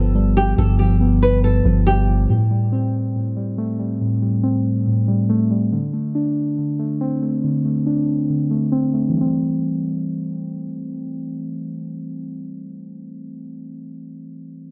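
Hip hop in A minor at 140 BPM with a half-time feel, this dark, hard-hitting fragment is cut from a longer piece. It opens with a fingerpicked nylon-string guitar melody, full-bodied and touched by digital delay, over a deep, sine-toned 808-style bass sustaining a long G1, both sounding only until 2.3 seconds. Muted, felt-like synth keys carry the accompaniment up front from the start through 14.7 seconds, soft and intimate with a chorus shimmer, a low-pass filter and a noise layer in their triangle and sawtooth tones. Between 2.3 and 9.1 seconds a filter sweep runs across the keys as the harmony moves from G7 to Am7 and then D5, returning to Am7 at 9.1 seconds. A studio reverb gives the parts a shared room.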